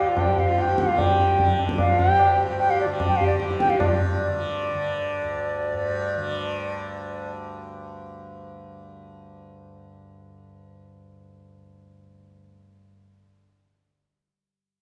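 Meditative and introspective, this Hindustani classical passage, cut from a longer piece, moves in 7/4 at 151 BPM and speeds up through its first 6.5 seconds. An airy bamboo bansuri carries the melody with vibrato and rolled-off highs, while a nasal, close sarangi traces a gliding second line with portamento over a buzzing, shimmering tanpura drone and ringing, high-tuned tabla. Sarangi and tabla drop out at 3.9 s, the bansuri stops at 7.3 s, and the tanpura rings on alone to 13.3 s, all set in the wet reverb of a recital hall.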